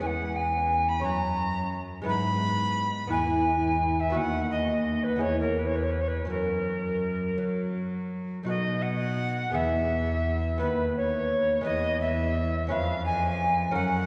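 A lilting, rubato 6/8 lilt carries this dance-like, radiant baroque-style sonata excerpt, where a pure, softly attacked alto recorder with gentle vibrato sings the melody over a delicately fingerpicked lute with double gut strings and a dark, reedy, bowed gut-string cello bass, all bathed in a lush church reverb heard from further back in the room.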